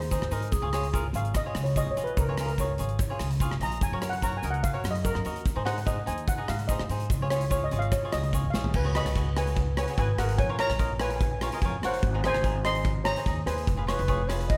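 Calypso at 146 BPM in a festive, carefree mood, this cut from a longer piece sets a shimmering steel pan lead, played with soft rubber sticks, over woody gut-string pizzicato upright bass, crisp picked cavaquinho, a grainy egg shaker in the background until 8.6 seconds, and an up-front gated 80s drum kit with bright cymbals and a tight kick that plays a fill at 8.5 seconds, while a distant, hollow jazz flute with vibrato and a breathy chiff appears only briefly at the start and again from 13.9 seconds, all under light reverb.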